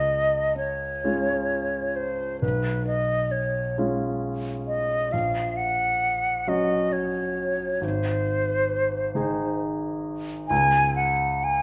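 Set in a recital hall with a generous, wet reverb, this short passage from a longer romantic piece for flute and grand piano places both instruments up front and close. The concert flute carries the melody with an airy, hollow tone, vibrato and a crisp attack, its close-miked sound sitting slightly ahead of the piano. The grand piano supplies the accompaniment with a clear, polished voice, reaching down into deep bass, its long sustain and audible action noise lending an intimate presence. Both parts play together from 0.0 to 11.6 seconds in a lilting compound metre, moving freely with rubato. The mood is lyrical and serene, with the harmony passing from the home chord through its seventh and subdominant colours to a dominant before settling back home.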